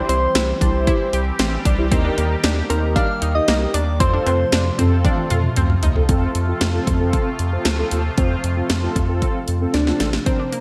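A punchy house drum kit drives this upbeat, bright synth-pop excerpt at 115 BPM in 4/4, its cracking snare, cowbell, hi-hat and toms sitting up front in gated reverb, with fills around 5.0 and 9.7 seconds. A round analog bass, deep and dark with a fast attack, holds the low end as the harmony moves from C to Eb to F. A soft, keys-like FM lead carries the gentle melody, dropping out after 5.8 seconds before returning near the end. Mellow synth brass with detuned sawtooth tone and vibrato supplies the accompaniment. An evolving, resonant pad with a slow attack and filter swell sustains chords underneath, while a warbling vintage pluck spins arpeggios through digital delay. Lush hall reverb and 1980s-style digital production frame the mix.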